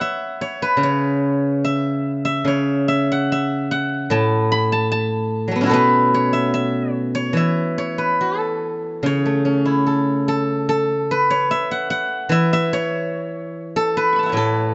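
A dark, softly rolled-off recording bathed in moderate plate reverb frames a serene, flowing fragment of traditional Chinese solo plucked-string music, cut from a longer piece. A single acoustic steel-string zither, played with fingerpicks and placed up front, carries everything alone from 0.0 to 14.7 seconds, its silvery, ringing tone spanning A2 to C#6 in a loose, rubato 2/4. The piece opens with one section, then shifts into a new one at 9.0 seconds that carries through to the end.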